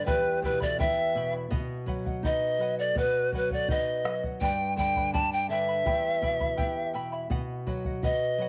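A breathy, bright pan flute with vibrato, a soft attack and a touch of chiff carries the melody up front in this earthy, wistful Andean folk excerpt in E minor at 83 BPM in 2/4, over a fingerpicked nylon-string guitar, a shimmering double-strung charango, a round, band-limited bombo, and a ringing hard-mallet vibraphone in the background, all bathed in moderate spring reverb as the chords move from Em through B and G.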